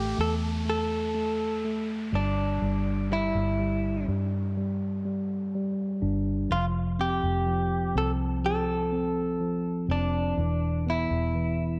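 A clean, compressed electric guitar, recorded direct and sitting up front, carries the melody through spring reverb and slapback echo in this heartbroken, longing pop ballad at 62 BPM in 4/4, tuned to A4 = 438 Hz. A clean tine electric piano supplies accompaniment while a dark, round, punchy foam-muted fingered bass anchors the low end, moving through A5, Em7/G, F and E5. A faint electronic downlifter sits beneath them until 6.5 s, all captured in a dry, close 1970s-style studio sound in this short fragment of a longer piece.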